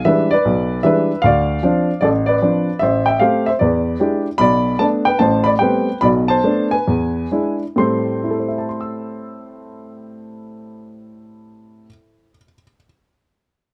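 Swinging eighths in 4/4 drive this cool solo jazz fragment, cut from a longer piece, where a dark, mellow baby grand sits up front in a dry, intimate, closely miked sound with audible action noise and short sustain, easing its pace between 4.4 and 7.8 seconds as the harmony moves from E7#9 through minor-seventh chords back to Am7.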